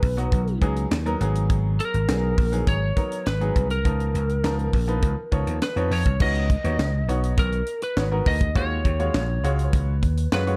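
A twangy, slightly broken-up lead guitar opens this short danceable boogie funk clip at once, with a growly, punchy slap bass and a tight acoustic drum kit of kick, high-tuned snare, hi-hat, handclaps and crash cymbal. A brilliant baby grand piano joins as accompaniment at 0.2 s. The groove sits at 102 BPM in a straight 4/4. The bass and drums are up front and carry the most weight, and the drums keep a natural, small-room sound. The picked, compressed guitar plays the melody in a narrow upper range, with tape echo trailing its notes, while the piano sits lower in the mix behind it. The harmony moves through rich extended chords such as Abm7 and Db13, then shifts at 6.2 s to Db9sus4 and Ebm11 for a second section. The production is dark and warm, with little reverb, giving the funk a dry feel.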